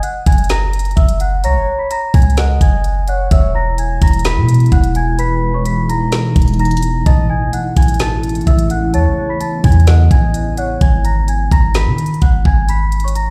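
Hip hop in a trap vein, this dark, hard-hitting excerpt moves at 128 BPM in 4/4 with a half-time feel, centred on G# minor. An electronic trap drum kit sits up front from the start, its knocking kick, woody snare and crisp hats driving the groove, while a clean 808-style bass enters at 0.3 seconds with deep, boomy sine tones that decay after each fast attack. Above them, a bell-like, delicate celesta carries the melody through a low-pass filter and digital delay, sitting mid-forward in the balance. A smooth, gliding portamento lead with chorus, vibrato and delay traces a quiet second line from 1.4 seconds, and a glassy, ethereal FM pad with ensemble chorus and its own reverb swells in at 3.7 seconds to hold mellow sustained chords. The harmony moves from F# through E and A before settling on G# minor at 10.8 seconds, where the pad and lead drop away and the drums, bass and celesta carry on alone. 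The whole mix sounds as if played on a big sound system in a bare stone room, lending an echoing space.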